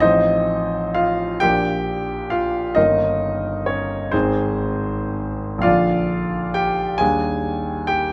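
Yearning and melancholic, this short passage from a romantic nocturne unfolds slowly in 12/8, with a flexible rubato pulse of roughly 38-46 dotted-quarter beats per minute. A solo grand piano carries everything across the full 8.1 seconds, reaching from the deep bass at G1 up to Ab5. Its tone is clear and present, sitting up front with a long sustain that lets each chord ring into the next. The harmony drifts from F7/A through Bb, Eb7/G and Ab before returning to Bb and settling on a tender Ebmaj7 at 7.0 seconds. Close, detailed microphones in a dry room capture the instrument with intimate precision.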